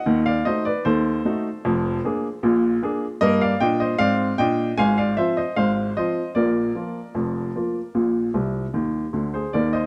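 A moderate plate reverb with a 3.2-second tail surrounds this short fragment, giving the room a soft, lingering sheen. The focus is a solo upright piano, woody and vintage in tone, placed up front in the mix with a short sustain on each note. The music is lively, playful ragtime at 76 BPM in a straight 2/4 feel, tuned slightly high to A4 = 441 Hz, and the piano ranges from a low F1 up to Ab5. The harmony moves from Ebdim7 through Bb7/F, Eb/G and Fm/Ab before settling on Bb. At 8.3 seconds the piano adds a brief fill, and the passage is cut off at 9.9 seconds, leaving the impression of a larger piece continuing beyond it.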